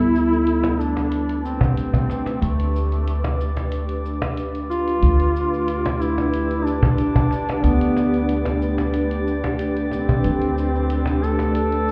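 A folk-style duduk carries the melody up front, its scooped notes, vibrato and smooth top trailed by tape echo, in a hypnotic, lightly swung slice of organic downtempo. Beneath it, an ethereal, detuned sawtooth pad holds sustained chords moving from Dsus4 to Gadd9/D under a filter sweep, and a bright, glassy texture of drifting overtones enters at 0.7 seconds. A dark, thumpy pizzicato upright bass and a woody, soft-handed cajon sit up front while layered electronic cabasa and hi-hat stay in the background, the whole mix sounding muffled as if heard through a wall and bathed in a wet echo-chamber reverb with small-room ambience.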